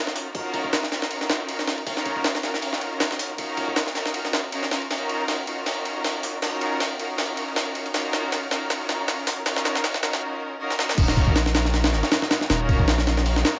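A gritty, sampler-style jungle drum kit sits up front, its compressed, pitched-up hits carrying a thumpy kick, medium-tuned snare, hi-hat, ride and crash with a tape-warm, small-room character. This raw, nostalgic drum and bass piece moves at 158 BPM in 4/4 with a light swing on the sixteenths, set in Eb minor over an Ebm9 chord. A lush, bowed string ensemble holds sustained chords throughout, its clear, biting tone carrying vibrato and a smooth top. The opening builds with a drum fill from 4.9 seconds, then a short break at 10.2 seconds before the drop arrives at 11.0 seconds. There a deep, sine-based 808-style bass enters with a fast attack and long, decaying notes, thickened by tube saturation. The whole mix sits in light reverb with vinyl crackle and a dulled top end, as though lifted from an old record.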